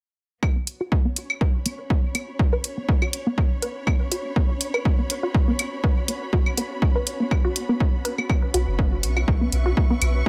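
Cool and hypnotic, this minimal techno cut at 122 BPM with a 16th-note swing opens at 0.4 seconds on an overdriven, punchy kick, echoing claves, and a lush bowed string section fading in. A squelchy resonant blip pluck riff with phaser and dub echo joins at 0.6 seconds, a dry hi-hat up front at 0.7, and a flickering grainy texture at 1.2. The pluck, texture and strings pump together until a deep, punchy sub bass with a pitch-drop attack arrives at 8.5 seconds.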